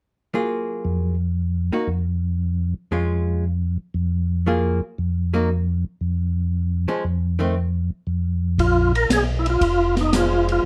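A swung 4/4 groove at 116 BPM drives this soulful, late-night soul jazz organ trio in Bb minor, cut from a longer piece. A clean, picked, compressed hollow-body archtop guitar plays accompaniment up front from 0.3 seconds, over a round, mellow organ bass with slow rotary and chorus vibrato, moving through chords such as Gbmaj9, Fm and F7b13. At 8.6 seconds, as the harmony settles on Bbm7, a fat, lightly overdriven percussive organ with key click takes the melody, and an acoustic drum kit with a boomy kick, high-tuned snare and shadowy cymbals joins in light reverb.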